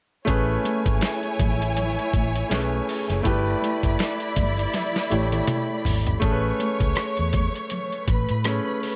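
Lush 1970s-style soul at a relaxed 81 BPM in A major, this short excerpt from a longer piece feels smooth and romantic, with a gentle swing on the sixteenths. A bright, up-front concert grand piano carries the accompaniment from 0.2 seconds, its brilliant tone moving between Amaj9 and G69 chords, while a studio string section sits farther back as a second line, bowed with vibrato, soft attacks and expressive portamento. Underneath, a vintage foam-muted fingered electric bass gives a dark, round, punchy low end, and a lo-fi sampler-style drum kit adds a compressed, pitched-down, muffled groove with a thumpy kick, medium-tuned snare, rim click, hi-hat and tape-like colour. Thick-skinned, high-tuned congas sit damped and distant in the background, as if in a large room. A drum fill from 4.7 to 6.2 seconds leads into a new section that returns to the Amaj9 chord, all set in light reverb and small room ambience.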